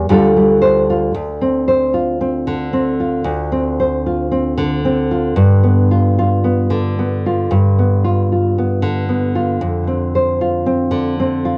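A full-bodied, thumb-plucked nylon-string guitar plays alone and up front in this reflective, wistful folk piece at 113 BPM in D dorian, its finger squeak and deep classical tone heard through cassette tape and a small room's moderate reverb as it moves from Dm through Dm7 and G7 to Dm7/F over 11.6 seconds cut from a longer homemade recording.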